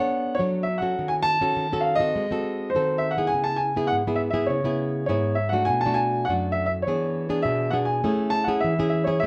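This samba at 102 BPM, a brief 9.3-second cut from a longer piece, feels sunny and joyful, with a warm, open grand piano carrying the melody up front with a long sustain. A fingerpicked nylon-string guitar with a classical, acoustic tone accompanies it throughout, moving through rich changes from Bm9 and G#7b9 toward a resolving Amaj7. Both instruments sit close in the mix, framed by a moderate studio reverb.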